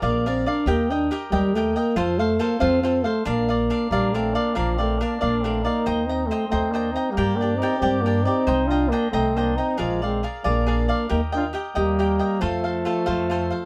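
Lightly reverberant, this festive, proud mariachi excerpt in Bb major moves at 92 BPM in 6/8, with a dark, soft-attacked French horn carrying the melody up front over crisp picked cavaquinho and growly, woody pizzicato upright bass, while a mellow, distant trumpet with light vibrato adds a second line from 3.9 seconds as the chords move through Bb7, Eb, F, Gm and Cm7.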